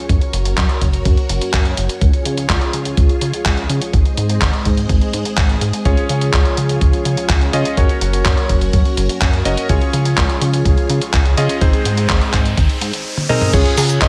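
Sunny and playful, this italo disco excerpt moves at 125 BPM in Db major, with a lush string machine holding sustained chords over a glossy, dark chorused synth bass with tube saturation, a thumpy electronic kick and a gritty, tape-warm sampler-style kit of hi-hat, handclaps, cabasa, toms and crash bathed in gated reverb. A clear, clangy electric grand piano adds stabs with digital delay from 5.9 seconds, a background riser builds from 10.8 seconds into a drum fill, and a breathy alto saxophone with light vibrato takes the melody at 13.3 seconds. The chords cycle through Gb, Db and Ab, and the mix is dry.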